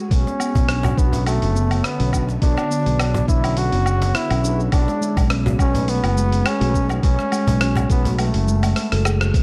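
A very quiet, ethereal pad opens the passage with slow-attack sustained chords, and at once a fretless electric bass, a gritty sampler-style soul kit of hi-hat, rim click, shaker and woodblock, and a thumpy electronic kick join in, setting an earthy, mystical organic downtempo groove with a light swing. Up front, the growly, punchy bass carries ensemble chorus and sidechain pumping, while the tape-warm kick and kit sound compressed and re-recorded in a large room. A bucket-muted trumpet sings the melody in a dark, veiled jazz voice with light vibrato and delay, close-miked and solo. From 0.3 seconds a steel tongue drum struck with soft rubber mallets adds round, ringing, meditative arpeggios through a digital delay, and a snappy cajon sits in the background. The harmony moves from Bmadd9 to F#sus2 at 4.7 seconds, and a drum fill at 8.8 seconds leads to a band accent at 9.2 seconds in this dark, lightly reverberant production.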